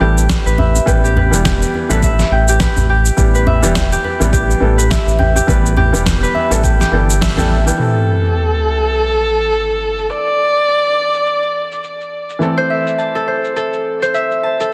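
A dark, bowed kamancheh with expressive vibrato and portamento takes the melody at 7.8 seconds, arriving with an electronic sub drop as the harmony moves from Em to Am, in this earthy, hypnotic organic downtempo piece at 104 BPM with a swung 16th feel, where a mellow felt-muted upright piano with audible action noise and sidechain pumping, bright fingerpicked concert harp arpeggios through delay, and a round analog bass with tube saturation that stops at 7.7 seconds sit over a gritty sampled shaker and fat snare, a deep electronic kick in the background and a very quiet djembe, set in a lush hall reverb and a dense, heavily limited modern master.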